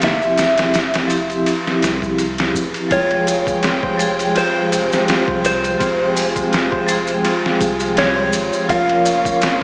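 A slightly broken-up electric slide guitar carries the melody in this dark, smoky trip hop excerpt at 83 BPM in F harmonic minor, over a ringing, hard-mallet vibraphone colored by tremolo and tape echo. A gritty, pitched-down sampler drum kit with a thumpy kick sits up front, while distant maracas and a round sub bass stay in the background, and a very quiet, tense drone sounds from 0.2 seconds to 2.9 seconds. At 2.9 seconds a clear, bowed string section and a fingerpicked Celtic harp, both carrying vintage 12-bit sampler grit, join the reverb-soaked, small-speaker haze over an Fmadd9 chord, before the harmony moves to Bbm/F at 8.7 seconds.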